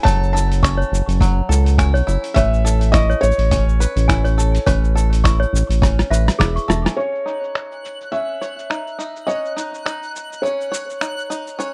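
Folktronica in C# minor at 104 BPM, delicate and autumnal, with a lightly swung 4/4 groove in this short excerpt from a longer piece. A felt-muted upright piano carries the melody with a soft, intimate tone, its action noise audible beneath a vintage 12-bit sampler grit and tape echo, while a clanky, slightly out-of-tune toy piano adds a bell-like second line until 7.0 seconds. A twangy bluegrass banjo, played with fingerpicks, runs arpeggios through a low-pass filter and tape echo, and a round analog bass sits up front, deep and evolving with a ring-modulated edge. The drums pair a muffled, thumpy electronic kick, overdriven and set in the background, with a pitched-down lo-fi sampler-style kit of finger snaps, hi-hat, rim click and shaker in a small room. A drum fill leads to a band accent at 6.8 seconds, after which the chords move from F#m7 and Aadd9 to C#sus2, filter sweeps run across the drums and banjo, and a twinkling granular texture with an octave-up shimmer enters at 7.4 seconds. 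The dry, close recording has a 1970s studio character.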